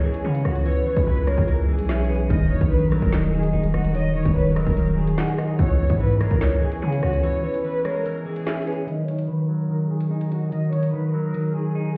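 Ominous and menacing, this half-time drill piece pairs a lush, vibrato-rich studio violin section on the melody with a velvety, chorused synth lead on a second line until 8.9 s. A bright, twangy clean electric guitar sits up front, while a light pipe organ with flute stops holds sustained chords in the background. A growling, buzzy 808-style bass anchors the low end until 7.2 s beneath a drill kit of hard-clipped kick, woody snare, metallic hats, handclaps and rim clicks; after a break, a filter sweep runs from 8.9 s to the end, and the whole mix sounds muffled as if heard through a wall, with stone room reverb.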